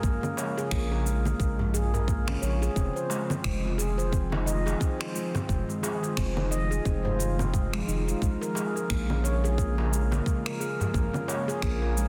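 Mystical and meditative, this organic downtempo excerpt moves at 88 BPM with a 16th-note swing in Bb minor, drifting between Bbm7 and Fm7 chords. Up front, a ringing stainless-steel handpan plays close, soft-fingertip arpeggios through tape echo, over a round analog bass that pumps with the sidechain, and a tight electronic kick, layered electronic cabasa, congas and finger snaps, and a crisp, distant metal-shell darbuka. Behind them, an ethereal, detuned pad holds sustained chords with ensemble chorus, its own reverb and sidechain pumping, all set in a moderate echo-chamber reverb under a dense, heavily limited master.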